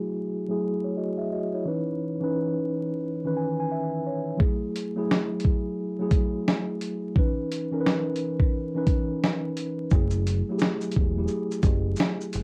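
A mellow, clean tine electric piano opens this hazy, melancholic lo-fi hip hop excerpt, its chords of F#m9 and C#m9 softened by cassette tape and a low-pass filter, with a filter sweep across its first 9.9 seconds. At 87 BPM in 4/4 with a swung sixteenth-note feel in F# dorian, the piece settles into an unhurried, wistful sway. A dusty, sampler-style drum kit enters at 4.4 seconds, gritty and compressed, with a thumpy kick, medium-tuned snare, hi-hat and shaker that sound re-recorded in a small room. At 9.9 seconds a new section begins as a deep, round fingered electric bass arrives, dark and up front, sitting low between E1 and F#1. Light reverb, cassette coloring and vinyl crackle give the whole recording a homemade, worn feel.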